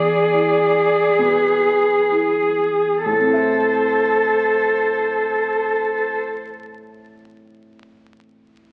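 A dark, smooth cello sits up front, singing an even, vibrato-rich second line high in its range, between G#4 and A4. Above it, a single warm violin carries the bowed melody from B4 to D5, expressive and smooth-topped, with vibrato and gliding portamento. A mellow concert grand piano supports both from E2 to E5, its deep bass giving this elegiac, solemn slow movement for piano trio a sombre floor. The music moves at a very slow 30-35 BPM in 4/4 with rubato, easing down through its opening as an E7 chord resolves to A minor at 3.1 seconds. Violin and cello stop at 6.2 seconds, leaving the piano alone until the fragment ends at 8.7 seconds. The trio sounds as if heard from a very old 78 rpm record, with vinyl crackle and a soaked scoring-stage reverb of about 1.8 seconds, in a brief cut from a longer piece.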